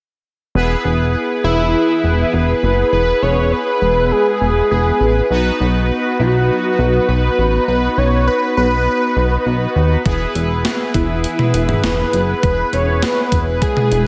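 A thick, detuned unison lead carries the wistful yet upbeat melody of this synth-pop passage over fat, wave-folded analog synth brass and a glossy, pulse-width-modulated synth bass, all bathed in a dreamy hall reverb, and a thumpy, overdriven 12-bit drum machine joins them at 10.1 seconds.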